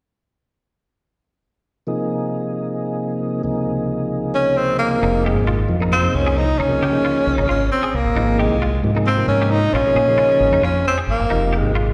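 A breathy tenor saxophone solos up front with scooped notes and vibrato from 4.3 seconds, over a mellow tonewheel organ that turns on a slow rotary speaker from 1.9 seconds, while compressed, twangy guitar stabs and a round, punchy fingered dub bass join at 5.0 seconds in this slick, intense jazz excerpt in 7/8, heard as a live gig through the venue's PA with recital-hall reverb.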